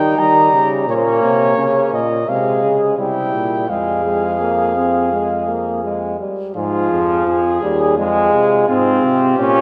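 Serious and driving, this short classical passage is an imitative canzona for brass ensemble in F minor, moving at 85 BPM in a straight 4/4 and cut from a longer piece. A dark trumpet carries the melody across a range of F4 to Bb5 with a soft attack, smooth top and light vibrato, while a mellow flugelhorn sings a second line between Db4 and Ab4, sounding distant and roomy. The trombone, the most prominent voice, supplies warm, up-front accompaniment from F3 to Db4 with light vibrato, and a bright bass trombone anchors the bass from Eb2 to Eb3. All four parts play throughout the 9.6 seconds, passing through harmonies from Eb and Bbmadd9 to Fm/C and C before settling on Fm at 3.7 seconds, with a new section arriving at 6.6 seconds. A wet church reverb with a 2.8-second decay surrounds the ensemble.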